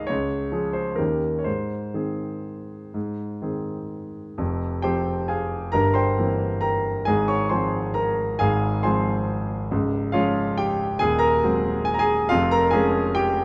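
A rubato waltz in three with a sparkling, elegant mood, this short classical excerpt features a solo concert grand piano, polished and up front with deep bass and short sustain, ranging from Db1 to Db6 in a dark production with moderate studio reverb as the harmony turns toward F minor at 4.4 seconds.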